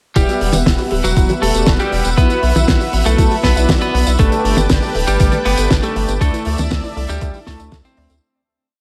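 Italo disco with a melodramatic, danceable mood, built on an overdriven four-on-the-floor electronic kick and a dry 70s kit with fat snare, tambourine and toms under gated reverb, a round sequenced sixteenth-note bass, a very quiet arpeggiated analog pluck, syncopated chorused synth brass stabs and a lush, warbling unison pad, while a twangy, slightly broken-up lead guitar with digital delay repeats a riff melody in octaves through a chorus over Emadd9, Bsus4, Gadd9 and Dsus2 that fades out from 5.5 to 8.2 seconds.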